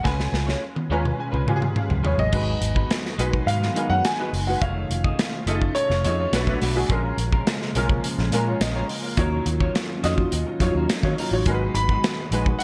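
A bright, polished 1980s-style digital production with light reverb frames this glossy, urban slice of jazz-funk pop, cut from a longer piece and moving at 105 BPM in a straight 4/4. A warm concert grand piano with long sustain and lush chorus carries the melody between C#5 and B5, while a second, clear and slightly worn grand piano plays accompaniment under an ensemble chorus, and a grand piano fill runs from 0.6 to 2.3 seconds. Up front, a modern studio drum kit with a tight kick, medium-tuned snare and rolled-off top sits in gated reverb, opening with a fill, while a dark, round, foam-muted fingered bass gives a punchy low end. In the background, a picked, compressed electric guitar at the edge of break-up repeats a riff with subtle chorus. At 2.3 seconds a hollow, flute-like pad with a slow attack and chorus enters with sustained chords, as the harmony moves from G#m7 through F7alt, Bm7 and A#m7 to D#m9 before returning to G#m7.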